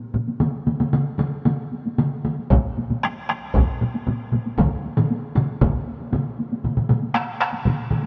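A heavy-stick taiko ensemble, recorded up front in a small room, bursts in at 2.5 seconds and stands out most before dropping away at 5.7 seconds. Three other taiko groups drive this powerful, straight Japanese traditional passage from its opening: one heavy-sticked in a small room, one heavy-sticked and close and dry up front, and one struck with hard sticks in a live room. The pace quickens throughout this fragment of a longer piece, and a light reverb sits over the whole as it moves into a new section near the end.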